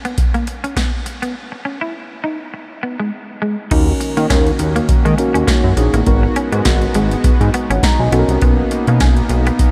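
Up-front chorused synth bass, glossy and detuned with a filter pluck, anchors this slick, funky early-eighties boogie funk excerpt. It arrives at 3.7 seconds alongside a mellow tine electric piano and a shimmering pulse-width pad, joining the punchy, deep-kicked analog drum machine and a bright, picked clean guitar riff that open the excerpt. A break runs from 1.4 to 3.7 seconds before the fuller section, with swung sixteenths and light digital reverb giving the groove a glossy sheen.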